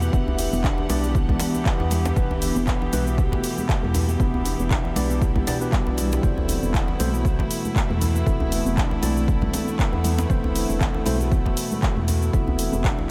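Spiritual and driving, this afro house excerpt moves at 118 BPM in E minor with a light sixteenth-note swing, cut from a longer piece and resting on Em7 before shifting to Am/E at 6.2 seconds. A punchy electronic kick sits up front, joined by a deep house kit of handclaps, dark hi-hats and shaker, while very quiet, close, ringing congas and a deep, dry djembe in the background add hand percussion. A woody, round FM bass with a fast, decaying attack and tube saturation anchors the low end, pumping with the sidechain. Above it, a meditative stainless-steel handpan plays arpeggios with delay, and a clean tine electric piano adds stabs from the background, also treated with delay. A dark, intimate chamber string section holds sustained bowed chords with light vibrato and a soft sul tasto touch, breathing with the same sidechain pumping, all set in a light small-room ambience.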